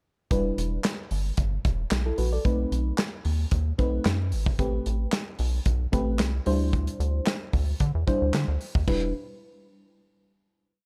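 This early-eighties boogie funk piece in E minor is danceable and funky at a mid-tempo 112 BPM, with a punchy acoustic studio kit playing a boogie beat of bright cymbals, hi-hat, crash and a snare layered with handclaps. A rubbery, hollow square-wave bass drives a fat, syncopated line with slides and chromatic approach notes, while a soft, round FM electric piano treated with chorus and phaser pushes drop-2 chords and adds short fills. The band moves through Em7, B7b9, Am9 and D9sus4 in a dark, warm studio sound before settling on a closing Em7 at 8.9 seconds.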